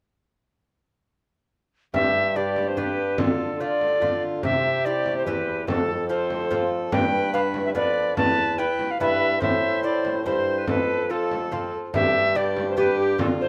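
A mellow, pure-toned alto recorder with vibrato leads this courtly, stately renaissance-style consort dance in a brisk 3/4 at 144 BPM in G mixolydian, entering at 1.9 s alongside a reedy, gut-string viola second line, a delicate fingerpicked lute with double strings, a distant bassoon bass and a small, bright frame drum, all set in light reverb as the harmony moves from G through Dm, C, F, G, Em, Am and F before returning to G at 11.9 s in this cut from a longer piece.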